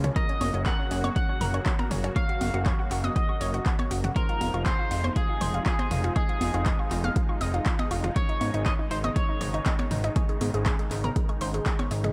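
A bright, pumping, euphoric progressive house excerpt at 120 BPM in 4/4, where a punchy, overdriven kick and a fat, nasal sawtooth bass sit up front under a round, wave-folded analog pluck arpeggio with chorus and tape echo, a clean fingered electric guitar melody with analog chorus and dub echo from 0.2 s, background detuned supersaw swell chords, a deep house kit of finger snaps, handclaps and metallic hats, and dry electronic toms, woodblock and congas, moving through Gb, Fm7 and Absus4.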